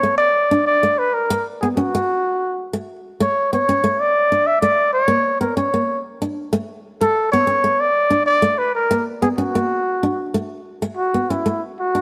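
Highlife in A major at 126 BPM in a straight 12/8, sunny and carefree, this passage is cut from a longer piece. Up front, a dark, breathy, close-miked trumpet plays a jazz-style solo melody between E4 and E5 with vibrato, soft attacks and scooped notes, while a bright, fingerpicked acoustic flamenco guitar accompanies between A3 and D4 with audible finger squeak. A moderate plate reverb surrounds the sound as the harmony passes through D5, Bbm and Asus4, and a brief new section opens on A5 at 10.8 seconds.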